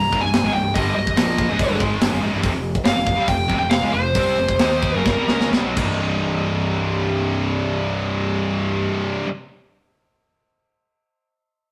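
Heavy metal in a relentless, aggressive mood, this cut from a longer piece slows down from 2.4 seconds while a dark, distorted lead guitar carries the melody up front until 5.5 seconds. A tight, mid-forward acoustic drum kit with a high-tuned snare and a rolled-off top drives forward, closing with a fill that ends at 6.0 seconds, as three bright, picked high-gain rhythm guitars (one scooped, one double-tracked) play the riff in the background over a punchy, fuzz-overdriven fingered bass. The sound is a rough rehearsal-room recording with warm saturation and a moderate stone-room reverb.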